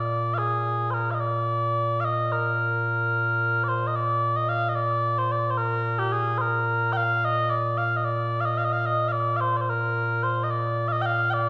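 In a straight-felt 6/8, this stirring, proud fragment of Scottish traditional pipe music is carried by a solo set of small bagpipes, mellow and sweet in tone, sounding continuously and sitting up front across its range. The tune moves into a new section at 3.9 seconds and runs until the cut at 11.5 seconds, drawn from a longer piece. A lush recital-hall reverb gives the playing the resonant air of a church or concert hall.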